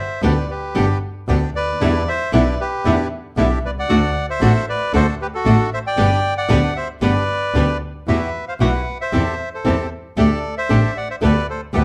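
Tense and melancholic, this rubato tango fragment opens with a reedy, up-front bandoneon melody wrapped in plate reverb, joined at 0.2 s by a second bandoneon playing stabs. Beneath them, a bright, fingerpicked acoustic flamenco guitar carries the accompaniment, while a single bowed double bass sits close and up front, its nasal, earthy tone carrying light vibrato and an airy, biting edge. The production is dark and warm, set in a moderately large studio room, and the harmony moves into a new section at 8.1 s before the passage is cut off.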